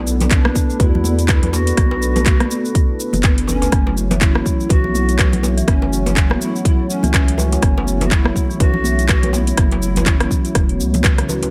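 Afro house at 123 BPM in 4/4, this hypnotic, warm excerpt carries a 58% swing on the sixteenths and is tuned slightly sharp to A4 = 441 Hz, moving from Bm7 to F#m7 at 3.7 s. A punchy, tape-warm electronic kick sits up front, joined by a layered house kit of cabasa, handclaps, metallic hi-hats and rim click, both re-recorded in a small room. Bright, high-tuned congas, close and dry, and a tight, cracking, compressed djembe sit in the background. A deep, round analog bass with a fast attack and a mellow marimba played with soft mallets, spinning arpeggios through digital delay, both pump with the sidechain beneath a moody, detuned sawtooth pad whose slow-attack chords shimmer with chorus. From 0.3 s, large cane pan pipes carry a distant, airy melody with vibrato and a soft chiff, their notes trailed by digital delay.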